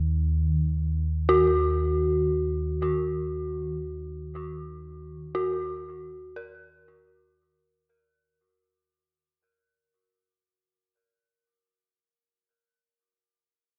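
Soaked in a wet plate reverb and heavy echo, this short dark ambient drone excerpt in Eb minor moves at a slow 59 BPM with an unsettling, ominous mood. A deep, rumbling drone blending triangle and sawtooth tones sits up front, its slow attack and long release colored by its own reverb and a phaser, and it fades out from 2.5 seconds before stopping at 8.0. From 1.3 seconds an eerie, inharmonic, detuned FM synth bell plays decaying arpeggios through chorus and dub echo, ringing on until 12.5 seconds.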